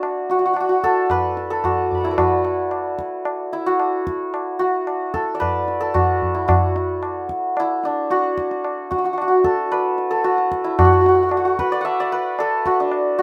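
Hindustani classical music in raga bhupali on D, meditative and serene at 112 BPM, with a bright, shimmering hammered santur carrying the melody up front from D4 to D6 in light reverb over a high-tuned, close and dry tabla with a short ring, both playing throughout this 13.2-second cut from a longer piece.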